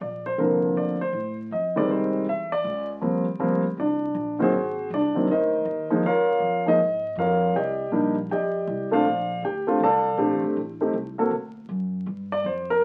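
Relaxed and sophisticated, this brief excerpt from a longer piece is a jazz piano trio swinging at 159 BPM in 4/4, with a lilting swing feel on the eighth notes in B-flat major. A grand piano carries the melody from the start, sitting up front with a natural, intimate tone, long sustain and audible action noise, ranging from D3 up to A5. Beneath it, a pizzicato upright bass on gut strings plays the bass line in a woody, dark, thumpy register from F1 to A2, placed well below the piano in level. The harmony moves through rich colors, opening on Bbmaj9 and passing through Fm9, Eb69, Ab9 and Db6 before returning to Bbmaj9 at 9.1 seconds and turning toward G7(no3) at 12.1 seconds. A moderate studio reverb gives the pair a sense of room, while the sound of a very old 78 rpm record, complete with vinyl crackle, lends the whole a vintage patina.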